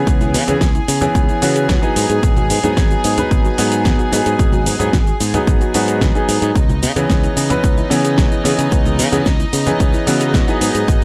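Nu-disco at 111 BPM in C# minor with a groovy, sleek feel, this short excerpt moves between C#m7 and G#m7 as a clear, intimate baby grand piano with audible action noise, tape echo and sidechain pumping plays accompaniment over floating, softly bowed studio strings and a very quiet, round pluck arpeggio, while a growly, punchy fingered electric bass plays alongside an up-front electronic kick, a pop kit with fat snare and metallic hats, and faint hand-played congas, bongos and egg shaker, all in a dry, gritty mix.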